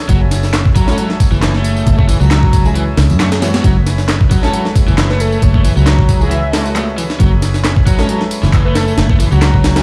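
A compressed sampler-style breakbeat kit with a thumpy kick and high-tuned snare drives this funky, gritty 135 BPM breakbeat excerpt in F# minor, held on a single F#m9 chord, with a round, foam-muted fingered bass up front, an overdriven garage guitar riff with delay, a tape-toned analog drum machine adding handclaps, ride and tambourine, a thick tonewheel organ on slow rotary speaker sustaining chords in the background, dark, woody bowed string stabs entering at 0.9 s, and an airy, dreamy detuned lead with chorus and telephone filtering arriving at 5.1 s, all played through a big sound system in a bare stone room with vinyl crackle.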